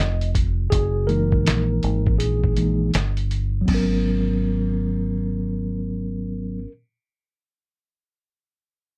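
A mellow tine electric piano takes a solo over a deep, round fingered electric bass from the first second, opening unaccompanied by chords before settling onto F#13, in a cool, nocturnal jazz-hop piece in G# minor at 81 BPM with a swung 16th-note feel. A gritty, compressed, pitched-down sampler-style drum kit with a thumpy kick, medium-tuned snare, hi-hat and crash enters at 0.2 seconds and drops out at 3.9 seconds, shortly after the harmony moves to G#m11, and the piano and bass carry on alone. The sound is dry and close, like a 1970s studio, with every part up front and the drums carrying a tape-warm, small-room grain.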